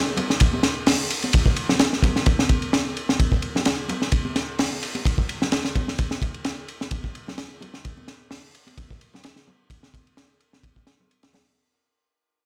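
This short excerpt has a small-room sound, and it fades out across its full 11.6 seconds. It is a funky, raw breakbeat groove at 129 BPM in 4/4, with a light 55% swing on the sixteenths. Up front, the acoustic drum kit sounds saturated and gritty, with a punchy kick, a high-tuned snare, a hi-hat and a ride with dark cymbals, all under a rolled-off top end. Congas sit in the background with a ringing, vintage, band-limited tone and hard hand strokes. Both parts play together from 0.2 seconds almost to the very end.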